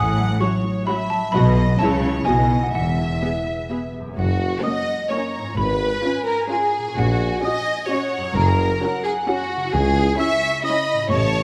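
This playful, whimsical cinematic film cue in 3/4 moves at 130 BPM with a quirky, storybook charm, cut from a longer piece. A xylophone played with soft rubber mallets carries the melody high up, its tone dry, mellow and slightly vintage. A violin section shares the tune in a close, smooth, bowed voice with vibrato, while a second violin section sits farther back on a supporting line. Dark, expressive violas fill in the accompaniment, and a mellow concert harp rings out fingerpicked arpeggios. The low end comes from lush, focused cellos and a rich double bass section, joined at 4.2 s by a present, classical-style solo tuba as the music lifts from E major to F# major. The whole cue sits in a wet scoring-stage reverb with a dark, warm production.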